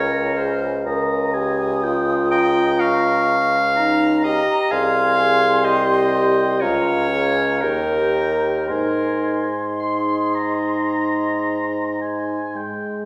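A bright, up-front clarinet stands out in this serene, lyrical passage, cut from a slow romantic movement for wind quintet in A-flat major, moving at roughly 53-64 BPM in 4/4 with a freely breathing rubato feel. Above it, a hollow silver flute carries the melody high in its range with vibrato and tongued notes, while a mellow oboe shapes a softly attacked second line with light vibrato just beneath. A French horn of vintage character fills out the middle of the accompaniment, and an up-front bassoon anchors the low bass with a warm tone and light vibrato. The harmony moves gently from B-flat minor through an E-flat seventh toward A-flat, then repeats that turn to settle on A-flat. The ensemble is heard from further back in a reverberant recital hall, with the clarinet dropping out at 12.0 seconds and the oboe and horn carrying on to the close at 13.1 seconds.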